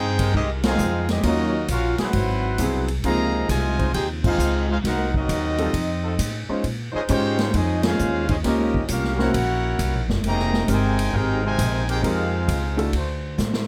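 Swinging and brassy, this short big band excerpt moves at 133 BPM in 4/4 with a swing feel, set in F minor and cut from a longer piece. A clear, present trumpet section carries the melody with light vibrato, while a loose trombone section plays a second line beneath it, and a second trombone section holds sustained chords in the background with a vintage tint. An upright bass sits up front with a woody, thumpy pizzicato sound, and a concert grand piano enters at 1.2 seconds to add accompaniment with deep bass. The drum kit has a big-room, natural sound with a punchy kick and medium-tuned snare, working across hi-hat, ride and crash, and the whole band hits accents together before a drum fill at 13.4 seconds. The harmony moves through rich chords such as Fm11, Ab7alt, Dbmaj9 and Gb7#11, returning to Fm11 before turning to D7, all captured with close, detailed microphones and light reverb.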